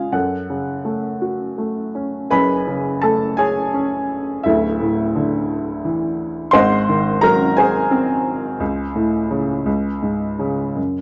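A clear, woody upright piano plays alone from the start in this wistful, dark 11-second passage of lyrical classical solo piano, drifting in rubato 6/8 at about 56 BPM in F# minor, tuned to A4 = 439 Hz and ranging from D1 to B#5, its chords moving from F#m through Dsus2 and G#7 to a bare C#5 at 9.7 s, all caught up front by close, detailed microphones in a dry room.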